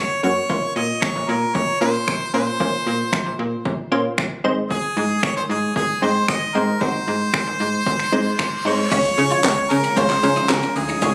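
A straight house groove drives this euphoric, upbeat dance-pop excerpt, with a punchy kick, cracking snare, crisp hi-hats, shaker, finger snaps, handclaps and crash cymbal forming a layered electronic kit. Up front, a bright harmonica carries the melody with light vibrato and scooped notes, trailed by tape echo. Beneath it, a snappy FM bass with a metallic attack and detuned, wave-folded wavetable chord stabs both pump with sidechain compression, moving from Bbmadd9 to Ab. A reverse cymbal sweeps in the background from 8.1 seconds, leading into a new section at 8.9 seconds where the harmony settles on Db. There a clean, compressed twelve-string electric guitar riff with ensemble chorus joins in the background, along with a very quiet, mellow organ-string pad that warbles with a vintage tone, and a jingly tambourine sits barely audible from 9.4 seconds. The mix has a light studio reverb and the slightly roomy character of a phone recording.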